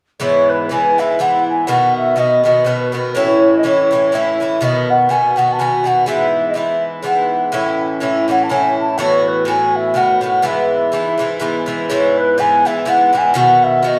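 Bright and rollicking, this short Celtic folk excerpt in a lilting, swung 3/4 pairs a pure, wooden baroque flute carrying the melody from a distance with an Irish bouzouki picking up-front, metallic double-string accompaniment, the two playing live together in a stone room whose wet reverb lingers around them as the chords move from E through B, A, B7sus4 and B7 back to E before turning to B at the close.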